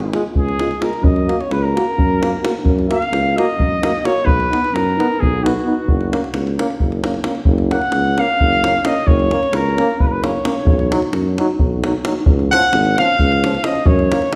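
A wet recital-hall reverb surrounds this festive, virtuosic Balkan brass band excerpt in 7/8 at 262 BPM, counted in eighths, in F# major, where a mellow trumpet with light vibrato plays the solo melody up front over a distant, roomy tuba bass and a tight, close, dry davul, while a brilliant trombone and a clear, vintage-toned euphonium add classical-style accompaniment in the background as the chords move through C#, F# and B.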